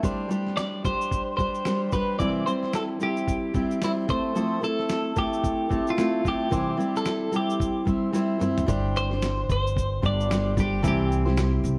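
A twangy, tremolo-tinged twelve-string electric guitar carries the melody from 0.6 s over a fingerpicked dreadnought acoustic guitar and a gritty, overdriven sampler-style drum kit with a thumpy kick and shaker in this sunny, carefree acoustic pop cut at 111 BPM with a light sixteenth-note swing, and after a drum fill a woody pizzicato upright bass joins up front at 8.7 s, all set back in the room within a moderate plate reverb.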